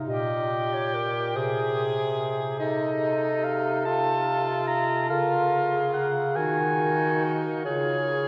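Yearning and solemn, this brief rubato classical excerpt for single-reed quartet moves slowly at 47 BPM in 6/8, with a mellow, present clarinet carrying the melody up to Bb5 over a warm alto saxophone second line. A warm tenor saxophone with light vibrato and soft attack supplies accompaniment, while a clear bass clarinet anchors the low register, both sounding distant and roomy yet up front. Everything sits in a wet cathedral reverb and a worn, warbling cassette-tape haze whose pitch drift lends the harmonies, moving from Ab/C through Bbm/Db and Ebm to Db, a faded, wistful quality.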